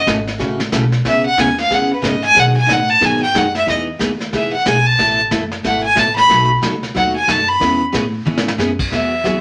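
A clear, earthy fiddle leads this short western swing cut, its bowed melody sitting close and up front with a light vibrato as it takes a solo from 0.0 to 8.9 seconds. The tune moves at a brisk 183 BPM in 4/4 with a swung eighth-note feel, keeping the mood playful and down-home in E major. Underneath, a woody, thumpy upright bass played pizzicato anchors the low end, while a bright, full-bodied picked steel-string acoustic guitar fills in the accompaniment. A vintage brush drum kit with dark cymbals, a tight kick and a rolled-off top keeps time and slips in a short fill at 8.3 seconds. The harmony wanders through jazzy sevenths and sixths, from F#m7 through B7 to a closing E6, all set in a wet studio reverb.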